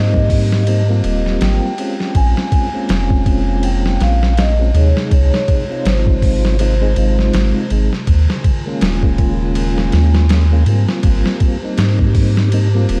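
Dark, vinyl-crackled production sets a melancholic, cinematic tone for this trip hop excerpt at 81 BPM, swung on the sixteenths and moving through Eb9sus4, Bbm7 and Dbmaj7. A gritty, pitched-down boom bap kit with a thumpy kick and studio reverb sits up front beside a deep, round analog bass, while a mellow, flute-like tonewheel organ with a slow rotary speaker, tremolo and tape echo carries the accompaniment over a warbling, nostalgic pad in the background. An airy, ringing vibraphone played with soft mallets and treated with tape echo sings the melody until 7.7 seconds.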